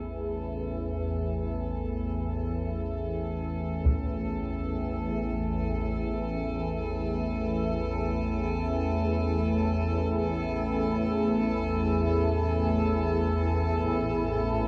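Unfolding in free time, this desolate, ominous dark ambient drone, cut from a longer piece, fades in on an up-front, detuned organ-like drone with ensemble chorus, layered from the start with an eerie metallic inharmonic tone. It is later joined by a lone hit of low-passed taiko ensemble at 3.9 seconds and a mellow, very quiet granular cloud pad at 13.8 seconds, moving from A5 to Dsus2/A, all bathed in huge reverb and worn, warbling cassette tape drift.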